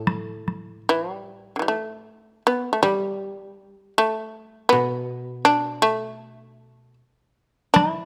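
Close, detailed microphones and a light reverb frame this short cut from a calm, austere piece of Japanese chamber music, played in a free, rubato 2/4. A bright, buzzing fretless shamisen carries the melody up front with a percussive, plectrum-plucked attack, while a woody, dry koto played with fingerpicks sits lower in the mix as accompaniment until 7.0 seconds. Solo taiko drums struck with heavy sticks sound close and up front in two brief passages, one near the opening and one at 7.8 seconds.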